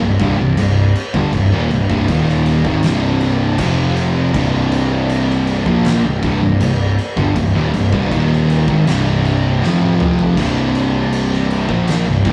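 An oversized, low-tuned acoustic drum kit drives this ominous, sludgy stoner and doom metal excerpt at 80 BPM in C minor: it enters at 0.2 s with a boomy kick, fat snare, dark cymbals and toms in a pumping stone room, adding a fill from 9.6 to 10.4 s. Two thick fuzz guitars, one warm and one dark, grind out the riff alongside a bright, double-tracked overdriven electric guitar, all sitting in the background, while a growly, overdriven fuzz bass sits beneath. The riff moves between Cm and F5 before landing on C5, and the rough rehearsal-room sound with tube saturation and moderate reverb gives the whole thing a gritty, heavy weight.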